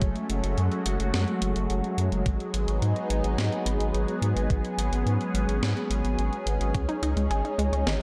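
Synthwave at 107 BPM in a straight 4/4, this short cut from a longer piece carries a nostalgic, nocturnal mood in a dreamy mix soaked in plate reverb and digital ambience. A lush, thick pad of detuned sawtooth and square waves holds sustained chords up front with a slow attack, colored by chorus, phaser and sidechain pumping as the harmony moves from F#madd9 to G#m7 and then C#sus2 at 6.7 seconds. Beneath it, a round, deep analog bass built from triangle and sine tones sits dark and sustained with a fast attack. A clean 12-bit drum machine supplies hi-hat and a medium-tuned snare with a sampler-style, tape-warm character, re-recorded in a small room, while a thumpy electronic kick drum of the same character plays until 6.9 seconds. Near the close, at 6.7 seconds, a bright, detuned sawtooth pluck with a filtered, decaying tone enters with arpeggios, dressed in chorus, cassette tape coloring and tape echo.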